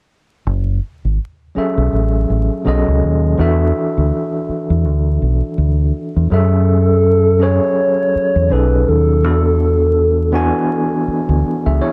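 Under a light reverb and a bed of vinyl crackle, this late-night, soulful neo-soul R&B fragment opens on a round, punchy fingered bass at 0.5 seconds, is joined by a gritty, barky electric piano with fast tremolo over lush minor-ninth and thirteenth chords, and at 6.3 seconds brings in a hollow, woody synth lead that sings a soft, sustained melody through chorus and slapback echo.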